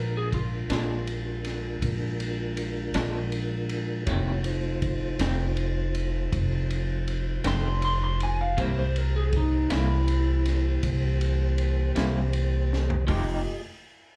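A growly, woody upright bass sits up front in this laid-back, soulful slow blues, cut from a longer piece, moving at 53 BPM in a straight 12/8 feel through Bb7, F7 and C7 before landing on F9 at 13.1 seconds. Two slightly broken-up electric guitars run through a small old amp: one plays a picked, lo-fi second line with lush chorus and slapback echo, while the other, compressed and treated with tremolo and slapback echo, supplies accompaniment from 0.7 seconds. A clean electric guitar solo carries the first 13.1 seconds. Underneath, a mellow tonewheel organ holds soft, flute-like sustained chords with chorus vibrato, key click and a stopped rotary speaker. A crunchy breakbeat kit with dark cymbals, a high-tuned snare and a tight kick sounds saturated and gritty with a rolled-off top, and it drops in a fill just before the closing chord. The whole band comes across as a live gig heard through the venue's PA, with light club reverb.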